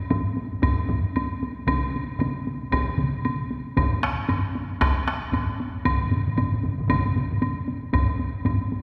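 Heard from further back in a concert hall, this short excerpt from a longer piece rings with a long, wet reverb that lingers for about 2.4 seconds. It is a Japanese traditional taiko drum ensemble at 115 BPM in 4/4, with a 16th-note swing, and its mood is ceremonial and driving. A solo taiko drum, struck with heavy sticks and captured close and dry, plays from the very start to 8.8 seconds. One taiko ensemble sits up front with a compressed, saturated weight. A second ensemble, set in a small room, stays in the background, and a third, heard in a live room, joins from 1.7 seconds. A woody, close woodblock sounds across the texture throughout.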